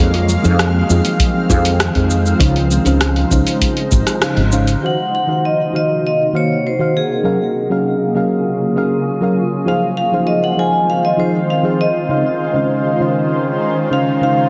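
The vibraphone, struck with hard mallets and carrying a medium motor vibrato, takes the melody from 4.9 seconds with a metallic, ringing tone set up front in a boxy small room, its notes trailed by digital delay. This short cut from a longer sunset chillout piece moves at 99 BPM in a straight 4/4 in Eb dorian, with a wistful mood drifting over chords from Fm7 and Dbmaj9 to Ebm69 and Gbmaj9. Throughout, a mellow FM electric piano supplies round, full-bodied accompaniment with a soft noise layer and a dark, decaying tone under chorus, while a shimmering ambient pad holds ethereal, detuned sustained chords with an octave-up sparkle, granular texture and built-in reverb, and a filter sweep runs across it from 4.8 seconds. In the opening passage, a woody fretless electric bass sits up front with a growly, hollow-body character and ensemble chorus, joined by a deep house kit of cabasa, hi-hat and rim click, its layered sound re-recorded in a small room, and a deep analog kick with tape-tinged weight. 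The band hits an accent at 4.2 seconds before the bass and drums drop out, leaving keys and pad until the vibraphone enters. A moderate plate reverb surrounds the mix, which is heavily compressed into a radio-like sound with a faint mains hum underneath.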